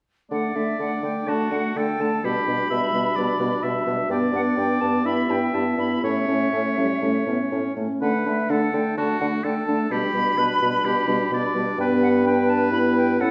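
Lively and cheerful, this quick classical-period movement for wind quintet is a brief cut from a longer piece, played with a flexible, rubato feel. All five instruments sound together from 0.3 to 13.3 seconds. The silver concert flute carries the melody high above the others with a pure tone, crisp attack and expressive vibrato. The clear oboe sings a second line beneath it, while the dark French horn, with its soft attack, and the roomy clarinet, set in the background, fill in the accompaniment over the mellow bassoon's bass line. The harmony cycles through D, G/B, G, Em/G and A, and a recital hall's reverb places the ensemble further back in the room.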